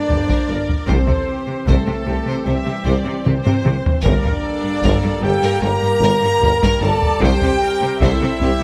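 Hard-stick taiko drums, compressed and saturated, drive this relentless, dramatic epic orchestral film-score excerpt at 76 BPM in G dorian, breaking into a fill at 3.3 seconds while mellow French horns hold sustained chords over Gm and C with vintage-toned trombones, clear trumpets add stabs, a lush violin section carries the melody beside a second violin line and a very quiet, hollow flute section, smooth violas accompany, and an intense, distant double bass section joins focused cellos and a roomy tuba on the bass, all set in a moderate scoring-stage reverb.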